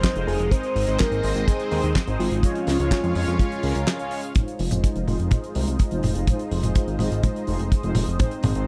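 A dry, close 1970s-style studio sound frames this melodramatic, bittersweet italo disco excerpt at 125 BPM in F minor, where a tight, up-front kick and a damped 70s kit with a fat snare, handclaps, hi-hat and toms drive a detuned sawtooth bass with tube saturation, bold brassy synth stabs, and a lush, bright unison pad with chorus and phaser, while a round, soft octave-layered lead carries the melody until 3.8 s, a break follows at 3.9 s, and from 4.4 s a drum fill runs under a filter sweep on the pad.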